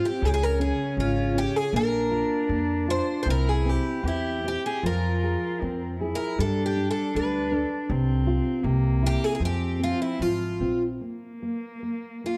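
A picked twelve-string acoustic guitar opens this mournful, longing fado-style ballad with a shimmering, octave-doubled melody up front, joined from the start by a single bowed cello playing an intimate sul tasto second line with soft attack and light vibrato, and by a thumb-plucked nylon-string guitar giving deep classical accompaniment. A woody, thumpy pizzicato upright bass with gut strings enters at 0.2 seconds, and the rubato 2/4 feel drifts around 73-81 BPM in F harmonic minor through Bb, C, Fm and G chords. The bass stops at 11.0 seconds as the harmony drops away, and the other three parts carry on in light reverb within a dark, warm production until this brief fragment of a longer piece ends at 12.4 seconds.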